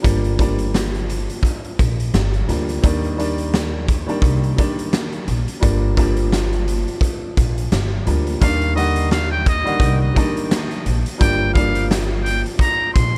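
A breathy, buzzy muted trumpet enters at 8.4 seconds with an intimate, whispered jazz solo over a gritty, reflective boom-bap hip-hop groove, where a woody, vintage upright piano comps on Gm7 and Ebmaj7 chords, a thumpy pizzicato upright bass anchors the low end, and a punchy, up-front acoustic drum kit with a fat snare and rolled-off top swings in a dry, close-sounding mix.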